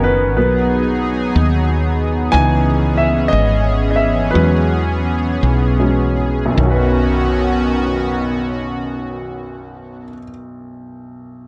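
Up front and intimate, a concert grand piano with deep bass, short sustain and audible action noise carries the accompaniment in this romantic, heartfelt six-eight pop ballad in B major, moving at 50-61 BPM and slowing down from 2.3 to 6.6 seconds. A shimmering, retro pulse-width pad holds evolving, slow-attack chords with chorus, while a woody, round fretless electric bass with a hollow-body, amped tone sits beneath, both stopping at 10.2 seconds as the piano carries on to 11.5. The sound is a dry, close 1970s-style studio recording with lossy compression artefacts, cut from a longer piece, with harmony moving from G#m7/B through C#m7 and E6 to Badd9.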